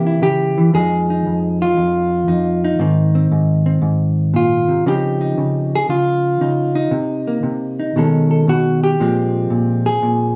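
A light reverb and a studio ambience frame this short solo jazz cut, taken from a longer piece, in F minor at 116 BPM with a swung 4/4 feel and a late-night, moody air. A lone hollow-body electric jazz guitar sits up front, its dark, clean, compressed tone fingered across a range from F2 to A4. It moves through rich changes, from Fm7 at 0.7 seconds through Dbmaj9 and B13 to a closing Bbsus2 at 9.0 seconds.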